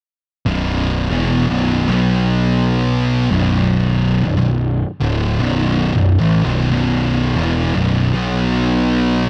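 A pair of thick, dark fuzz guitars sits up front, grinding out a heavy riff in B minor from 0.5 to 9.3 seconds at a slow 77 BPM with a swung eighth-note feel. Beneath them, a picked electric bass with overdrive adds a bright, growly low end, and light reverb in a dark, warm production gives this sludgy metal fragment, cut from a longer piece, its heavy weight.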